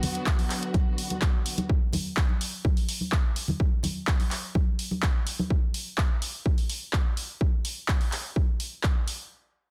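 A straight 4/4 pulse at 126 BPM drives this dreamy, driving progressive house fragment, where a punchy, overdriven electronic kick sits up front from 0.3 s alongside a layered house kit of handclaps and hi-hat, both re-recorded in a large room. Bright, close and dry congas with sidechain pumping add percussion until 5.5 s, while a lush, bowed string section with vibrato, portamento and sidechain pumping holds a sustained Bm/D chord before falling away at 1.7 s. The mix is dense and heavily limited, with little reverb.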